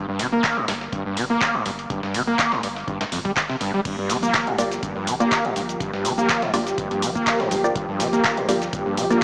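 Acid house with a gritty, hypnotic mood, this short cut from a longer piece rides a swung 4/4 groove on a single G minor seventh chord. Up front from the very start, an overdriven acid bass riff squelches with a resonant, distorted sawtooth bite, thickened by ensemble chorus and digital delay and pumping against the sidechain. Beneath it, a round sine sub bass sits deep in the background, while a booming analog drum machine pushes crash, handclaps, shaker and metallic hats forward, supported by an electronic kick and a compressed, sampler-style soul kit whose filtered hats and medium-tuned snare stay tucked behind. A smooth, detuned sawtooth pad enters at 3.9 seconds with soft-attack sustained chords and chorus, and at 4.6 seconds a muted, evolving dub chord stab joins in the background, its short plucks colored by phaser and delay. A lush hall reverb surrounds the mix, yet the overall sound carries the boxy character of a small speaker.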